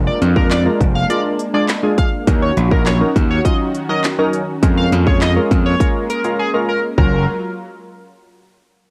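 A gritty, overdriven slap bass sits up front in this summery, euphoric dance-pop clip at 102 BPM, driving beneath a punchy house drum kit of kick, cracking snare, crisp hats, handclaps and toms, while glassy digital keys, a smooth sawtooth pad in the background and a bold, retro octave-doubled lead with chorus, vibrato and analog delay all pump against the beat over chords moving from A#7/E# to D#m7, with a barely audible downlifter in the opening 2.3 seconds and a silent gap from 6.4 to 7.0 seconds in this lightly reverberant cassette home recording.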